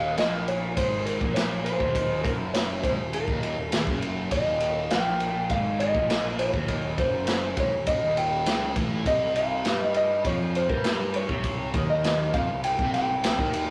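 A rough rehearsal-room recording with tube saturation and a wet stone-room reverb gives this short psychedelic rock excerpt a hazy, kaleidoscopic atmosphere. At a straight 101 BPM in 4/4, in Eb mixolydian and tuned slightly flat to A4 = 438 Hz, an electric slide guitar carries the melody between Bb4 and G5 with a slightly broken-up, compressed tone. Beneath it, a double-tracked fuzz guitar plays a bright, distorted riff colored by phaser, while a round, overdriven fuzz bass anchors the low end. A crunchy breakbeat drum kit enters at 0.2 seconds with kick, snare and ride, sitting up front with a gritty, saturated character, dark cymbals and a rolled-off top. The harmony rests on Eb5 before shifting to C5 at 9.1 seconds, and the passage runs to 13.7 seconds as a fragment of a longer piece.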